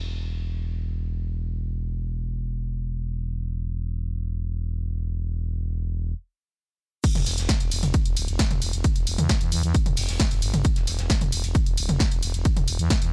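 Dark and hypnotic, this driving peak-time techno excerpt in E minor at 133 BPM opens with a growling, thick FM bass pumping under sidechain alone, then after a stop at 6.1 seconds drops at 7.0 seconds into an overdriven, heavy electronic kick, a punchy analog drum machine with low-pass filtered hats, snare, toms and cymbals, and a very quiet, crunchy breakbeat kit of hi-hat, shaker and snare, all captured as a dry, gritty hardware recording with transformer saturation.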